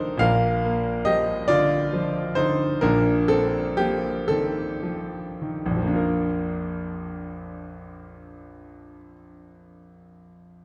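A clear grand piano carries this hopeful, lyrical romantic character piece on its own, its smooth, vintage tone set up front and its notes holding only a short sustain. The music moves in a slow, rubato 6/8 in Bb major, at roughly 33 to 48 beats per minute counted in dotted quarters, with the piano ranging from Bb1 up to F5. The opening passage eases and slows through its first 6.0 seconds, resting on Bb before shifting to F5/Bb. A new idea begins at 6.0 seconds, returning to Bb, and runs until 9.2 seconds. A wet recital hall reverb surrounds the piano within a dark production, giving this short fragment of a longer piece a gentle, reflective glow.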